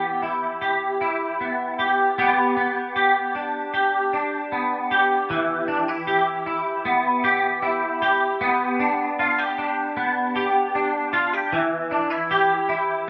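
A lone clean electric guitar opens this blissful, dreamy dream pop passage, its bright, twangy picked tone sitting up front and bathed in ensemble chorus and delay. At an unhurried 77 BPM in straight 4/4, it moves between Em and G, shifting into a second section at 5.3 seconds and settling on Em7 near the close of this fragment from a longer piece. A wet small-room reverb and a rough home-demo mix give it an intimate, hazy feel.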